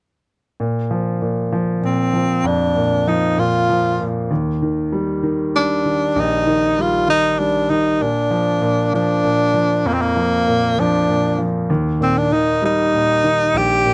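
A steady, straight 6/8 pulse at 65 BPM in dotted quarters carries this tender, romantic pop excerpt in Bb major, with a clear concert grand piano laying down low, deep-bass accompaniment from 0.6 seconds, its short-sustained notes polished and up front. At 1.9 seconds a bright tenor saxophone enters with a jazz-style solo melody, sung with vibrato and sitting slightly above the piano. Light reverb frames a dry, close 1970s-style studio sound as the harmony moves between Bb and Eb, and the second section arrives at 8.0 seconds.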